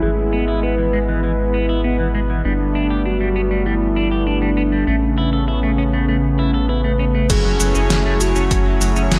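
A soft, octave-layered synth lead carries the melody through this nocturnal, driving synthwave excerpt, its full, round and dark tone shaded by chorus, phaser, vibrato and analog delay. Beneath it, a detuned, warbling analog pad with sidechain pumping holds sustained chords, a clean, picked electric guitar plays a riff through a low-pass filter and delay, and a deep analog bass with a filter sweep sits up front. At 7.3 seconds, fat, brassy synth stabs arrive with a tape-warm 8-bit drum machine of snare, hi-hat, cabasa and crash, plus a punchy electronic kick in the background that stops at 8.6 seconds, in a dreamy mix soaked in lush hall reverb.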